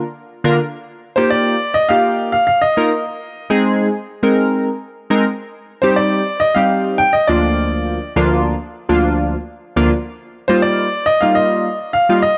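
Glossy, detuned retro synth keys with chorus and a filter sweep open this confident, driving dance-pop excerpt at 103 BPM over chords moving from Bb/D through Ebadd9, Ab and Cm, before a clear, natural grand piano takes the melody up front at 1.2 seconds, all set in a dark production with light reverb and small-room ambience.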